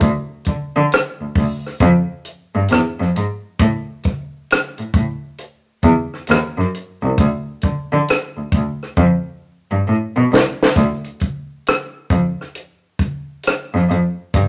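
Lightly reverberant and intimate, this late-night, smooth neo-soul R&B excerpt in D dorian moves at 67 BPM with a swung sixteenth-note feel: a single bowed cello, rich and focused with vibrato and a smooth top, carries the bass line up front beside a dry, natural compact cocktail drum kit of hi-hat, rim click, punchy kick and high-tuned snare, whose fill from 9.0 to 10.8 seconds leads into a new section.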